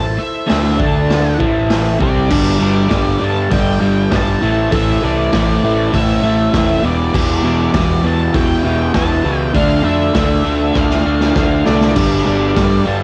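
A gritty home cassette recording with studio reverb opens this swaggering garage rock excerpt in A minor, taken from a longer piece at 100 BPM in a straight 4/4. A crunchy, double-tracked overdriven guitar sits up front with a tape-worn riff over a picked, amped electric bass, while a dark octave-fuzz lead guitar carries the melody and a very quiet vintage combo organ with light vibrato holds mellow, overdriven chords underneath. The raw, saturated drum kit enters at 0.5 seconds with a boomy kick, medium-tuned snare, hi-hat and crash in a small room with a rolled-off top, then breaks into a fill from 10.8 to 12.0 seconds as the chords move from Am through G, Em and Dm.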